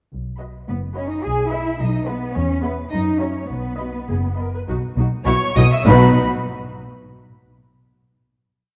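Muted double basses open this short, spirited and cheerful classical-period movement for string orchestra at 0.1 s with a pizzicato bass line in B major, soon joined by a distant second violin section doubling the tune at the octave and veiled violas plucking repeated notes and sustaining chords, then from 0.7 s by a lush, up-front cello section and smooth-topped violins carrying the melody, the whole moving at a rubato 96-109 BPM in 2/4 within a dark concert-hall reverb until the final B chord at 5.9 s.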